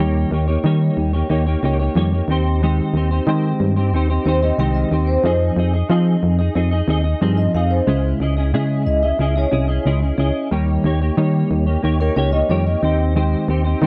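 The sound is dry and close, like a small 1970s studio room. This hazy, nostalgic indie pop fragment moves at 91 BPM in a straight 4/4. A clean, compressed electric guitar sits up front, fingered and treated with ensemble chorus and vibrato, and it plays accompaniment throughout. Beneath it, a punchy, round FM bass with a fast attack and dark decay carries the low end. At 4.3 seconds a mellow vibraphone played with soft mallets enters as a second line, ringing with a slow motor vibrato, lush chorus and tape echo before it stops at 13.0 seconds. The harmony drifts through Eb7, Abmaj7/Eb, Fm7 and Dbmadd9 before returning to Eb7 and Abmaj7/Eb, and the piece breaks off mid-flow as a cut from a longer work.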